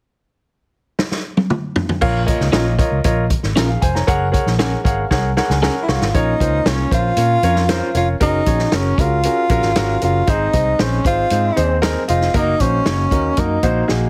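Heavily compressed and almost dry, with a radio-like sound, this driving, urgent excerpt of 1960s-style soul moves in a straight four. A vintage drum kit enters with a fill at 1.0 seconds, its punchy kick and medium-tuned snare sitting up front with a rolled-off top. At 2.0 seconds a woody upright piano, intimate with audible action noise and long sustain, arrives alongside a dark, round, foam-muted fingered electric bass. An electric guitar through a small old amp adds slightly broken-up picked stabs with spring reverb in the background. From 5.8 seconds a breathy tenor saxophone takes the solo melody up front, its soft attack, vibrato and scooped notes giving it a jazz style. The piano plays a fill just before the saxophone enters, and the drums add further fills as the harmony moves through Bbm, Gbadd9, Ab and Ebm/Gb.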